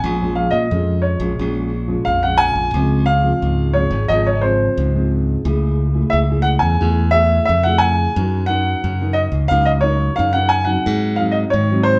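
A natural-sounding, up-front baby grand piano carries the melody through this nostalgic, bittersweet samba and choro excerpt at 89 BPM in Db major, tuned to A4 = 444 Hz. Beneath it, a dark, full-bodied nylon-string guitar with fresh strings is thumb-plucked in a deep classical manner, finger squeaks audible. A bright, punchy fingered electric bass sits direct and forward, while the band plays live together in a large studio room with a lush reverb over chords moving from Bbm7 through Dbmaj7, Gb6 and Ab7.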